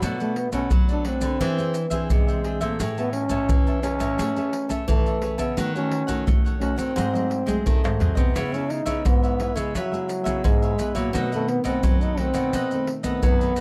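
A sunny, lively slice of samba and choro at 86 BPM opens with everything at once: a close, up-front percussion bed of maracas, pandeiro, tamborim and a deep surdo, joined by a growling trombone carrying the melody in a jazz-style solo. The trombone sits up front with a mellow yet raspy, gritty voice, soft in attack and vintage in character. Beneath it, a bright, crisp cavaquinho picks out the accompaniment alongside a fingerpicked classical nylon-string guitar with a warm tone, while a second nylon-string guitar, full-bodied and thumb-plucked with fresh strings, holds down the bass in the background. The harmony moves through jazzy colours such as Bm7, Eaug7, Amaj9, G#7b9 and C#m7 before landing on B7b9, with a drum fill from 7.8 to 8.4 seconds. The close, detailed sound keeps the room dry and intimate across this 13.6-second cut from a longer piece.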